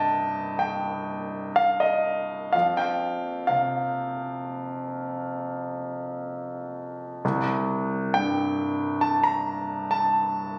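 In a loose, rubato 5/4 drifting between 59 and 68 BPM, this wistful, nocturnal impressionist piano piece in C dorian is cut from a longer work and runs for 10.6 seconds. A clear, intimate concert grand plays alone, up front, from deep bass at C2 up to Bb5, with long sustain and audible action noise, and notes on C5, F5 at 2.5 seconds, and C5 again at 7.2 seconds. It was captured on a phone in a recital hall with moderate reverb, then given club reverb and compression.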